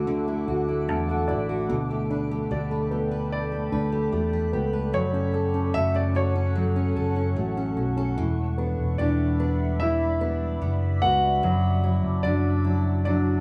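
Emotional and longing, this pop ballad excerpt moves at a straight 74 BPM in 4/4, with a band playing live in one room under a moderate large studio reverb. A grand piano carries both the melody and the accompaniment throughout, its tone smooth and vintage in one role and present and polished in the other, sitting up front, with a fill from 0.5 to 1.7 seconds. Beneath it, a fingered electric bass is dark, amped and round, also up front, while a picked steel-string acoustic guitar plays full-bodied jumbo arpeggios with audible finger squeak. An ethereal ambient pad holds sustained chords with an octave-up shimmer, slow attack and long release, its granular, evolving sound coloured by chorus, phaser and its own reverb. The harmony moves from Dadd9 through Gadd9/D and F#m, then shifts at 8.2 seconds into a second section on Em7 before settling on Dadd9/F#.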